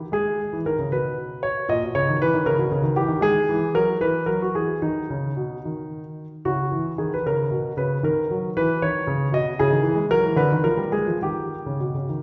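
Grave and introspective, this baroque-style suite movement for solo grand piano unfolds in G# minor in a rubato 6/8, its dotted-quarter pulse hovering around 69-79 BPM. The concert grand sounds polished and present, with deep bass and short sustain, set up front while the wet recital hall reverb places the listener further back in the room. Its harmony moves from G#m through a tense D#7b9b13 over A#, a brief chordless moment at 5.6 seconds, and on through C#m69 and Ddim to D# as this cut from a longer piece breaks off at 12.2 seconds.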